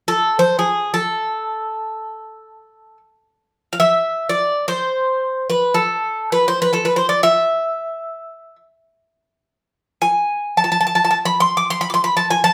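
A solo Greek bouzouki carries a reflective, wistful Greek folk melody in free time and A harmonic minor, its picked, metallic double strings with some octave-doubled courses sounding up front from 0.1 seconds to the close of this short excerpt at 12.5 seconds, set in a wet studio reverb heard from further back in the room.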